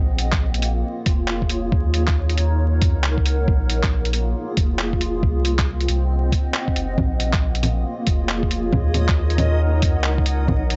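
Swung sixteenths at 137 BPM in 4/4 drive this ghostly, nocturnal future garage piece in Bb minor, where a muffled, thumpy, pitched-down kick and a compressed lo-fi sampler kit of bongos, handclaps and hi-hat sit over a deep, round sine sub bass. A blurred, granular cloud pad with 12-bit grit, reverb and sidechain pumping holds Bbm7, Ebm7 and Cdim chords, and at 8.2 seconds a reversed, detuned, bright swelling texture enters on a high Eb. The recording is dry and gritty, dusted with vinyl crackle and a dulled top end.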